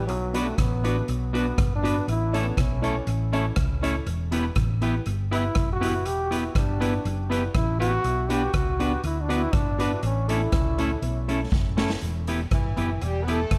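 Driving and mischievous, this ska excerpt opens on a warm trombone solo with light vibrato and dub echo, carried by a dark, round hollow-body bass and a boomy, airy street-band drum kit of hi-hat, kick, rim click and snare, both up front. A bright, clean picked electric guitar, also dubbed with echo, and a woody, boxy upright piano placing short stabs in the background fill out the groove in a big, lightly reverberant room. A drum fill at 11.5 seconds hands over at 12.5 seconds to a mellow, smooth-topped horn section playing in octaves.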